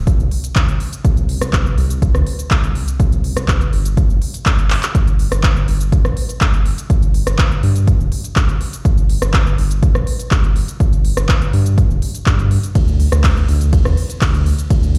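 A steady, straight pulse drives this short fragment of progressive house, cut from a longer piece, with an expansive, euphoric mood. A punchy electronic kick drum sits up front from 0.1 seconds, layered and produced with the character of being re-recorded in a small room. Alongside it, a deep house drum kit brings handclaps, rim clicks, shaker, ride cymbal and smooth hi-hats, its hats, percussion and cymbals pumping against the sidechain, and a drum fill arrives at 4.7 seconds. Underneath, a round analog bass starts at 0.0 seconds and runs through the whole passage, a deep, dark blend of sawtooth and sine with a fast attack and sustained notes, placed up front and also breathing with sidechain pumping. The parts themselves carry little reverb, yet the whole sounds as if played back on a big sound system in a bare room, with a large studio reverb framing the mix.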